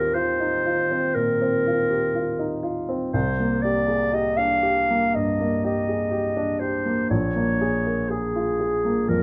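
Impressionist classical duo, mysterious and hazy, in a rubato 60 BPM 4/4 and tuned to A4 = 438 Hz: a dark, distant-sounding clarinet sings the melody between Ab4 and F5 over a polished, present grand piano accompaniment reaching down to Bb1, with both up front in a close, detailed recording with light reverb, as the harmony drifts through Eb69, Cm9 and Bbm7 in this short cut from a longer piece.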